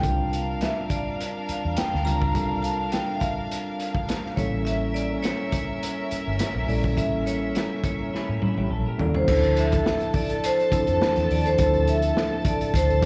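A ringing vibraphone with slow motor vibrato carries the melody through this silky, smooth excerpt of lush 1970s-style soul at 104 BPM in D minor, over a woody, distant violin section, clean tine electric piano, a round foam-muted bass and a muffled, up-front vintage drum kit, while a twangy, chorused guitar riff sits in the background from 8.1 to 9.3 s alongside a drum fill before the harmony settles on Dm7, all heard through club reverb like a live gig.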